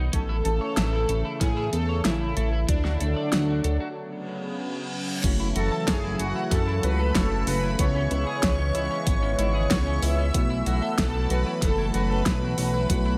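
Synthwave at 94 BPM in a straight 4/4, nocturnal and driving, this excerpt from a longer piece is bathed in a dreamy plate reverb. A swirling, detuned analog pad holds sustained chords with phaser, chorus, 12-bit sampler grit and sidechain pumping, while a glossy, dark chorused synth bass sits up front and a slightly broken-up electric guitar picks arpeggios through analog chorus and tape echo. An airy supersaw carries the melody with a moving notch and soft attack, over a knocking, overdriven electronic kick and a pop kit with a fat snare, warm hats and crash, both re-recorded in a small room. After a break from 4.0 to 5.2 s, marked by a reverse cymbal, the harmony moves from A, D and Bsus2 into F#m7, C#m7 and B7sus4. There a bright, bell-like tine electric piano adds stabs in the background, and from 5.6 s a shimmering vintage string machine of violins traces a high second line.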